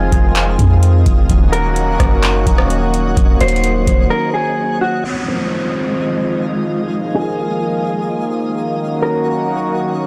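A blown-out, overdriven recording with little reverb frames this melancholic, ethereal cloud-rap excerpt at 128 BPM in a half-time feel, moving between Fm7 and Ebm7. A warbling, detuned analog pad with chorus and sidechain pumping sits up front beside a dark, compressed electric guitar melody through low-pass filter and digital delay, while a faint granular texture adds twinkling octave-up shimmer. A booming drum machine with deep kick, metallic hats, handclaps and rim click and a boomy sine 808 bass drive the first 4.1 seconds, then drop out for a break, after which a downlifter sweeps through from 5.0 to 8.8 seconds.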